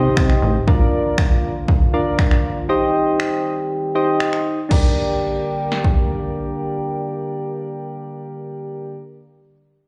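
This short clip sounds like a live gig heard through the venue's PA, with a light recital-hall reverb around it, and it is cut from a longer dance-pop piece in G minor at 119 BPM. The mood is energetic yet bittersweet. Soft, round electric-piano-like synth keys carry the accompaniment up front, treated with chorus, slapback echo and sidechain pumping, while a mellow classical-style brass ensemble holds sustained chords beneath them. A plucky, funky analog bass and a very quiet electronic downlifter appear only at the opening, both gone by 0.7 seconds, as a punchy analog drum machine enters at 0.2 seconds with kick, snare, finger snaps and crash cymbal, its kick dropping out between 2.7 and 4.7 seconds before the drums stop at 6.0 seconds. The harmony moves from Cm to Bb and back to Cm, settling on Gm as the second section begins.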